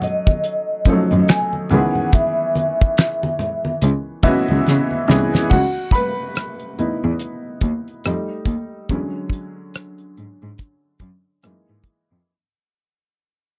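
A slow 71 BPM groove in 4/4 with a 16th-note swing carries this smooth, sultry neo-soul R&B excerpt in C# minor, driven by a damped 70s drum kit with a fat snare, tight kick, dark cymbals, finger snaps and rim clicks, plus low-tuned, thick-skinned congas that play until 5.5 seconds, with a drum fill running from 4.7 seconds. A metallic, ringing vibraphone with fast motor vibrato sings the opening melody over a clear, woody, slightly detuned upright piano, while a veiled, muted cello bowed with vibrato and portamento enters at 0.9 seconds as the bass. From 5.5 seconds the piano takes a solo over rootless extended chords as the music fades out, all captured in a dry, close 1970s-style studio sound.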